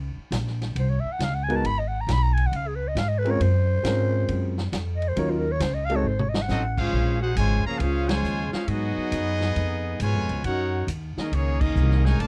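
A swung 4/4 big band groove at 136 BPM carries this brassy, sultry fragment, where a woody pizzicato upright bass and a vintage drum kit with dark cymbals frame a raspy, growling clarinet solo over intimate grand piano chords with audible action noise, before a drum fill at 6.0 seconds hands the melody to a bright trumpet section backed by mellow trombones as the tune settles into Bb minor in a dry, close 1970s-style studio sound.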